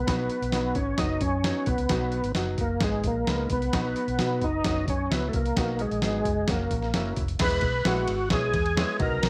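A straight 4/4 groove at 131 BPM drives this danceable, uplifting 1960s-style soul excerpt in B major: a dusty, compressed sampler-style drum kit sits up front with a thumpy kick, fat snare, hi-hat, ride and crash; a dark, foam-muted fingered electric bass gives round, punchy low end; a woody, slightly detuned upright piano with audible action noise adds intimate accompaniment; and a thick, overdriven tonewheel organ carries the gritty melody through chorus vibrato and a slow rotary speaker, set in light digital reverb, until the chords shift from cycling around B, F#sus4 and G#m to E at 7.4 seconds.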